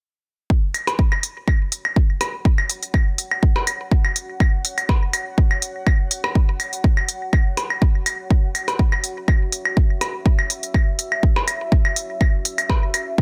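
A punchy, overdriven electronic kick opens this cool, hypnotic minimal techno cut at 0.5 seconds, soon joined up front by clicky hi-hats and tape-warm claves and percussion blips, the latter given delay and a small-room character, all moving at 123 BPM in 4/4 with a light 16th-note swing and tuned to A4 = 444 Hz. From 2.4 seconds a deep, moody ambient pad fades in underneath, built from detuned unison sawtooth and a sine sub octave with wave-folding and ring modulation, its slow attack, long release, chorus and reverb giving a mellow haze that pumps against the sidechain. The dense, heavily limited digital mix keeps the percussion forward and the pad low in the background.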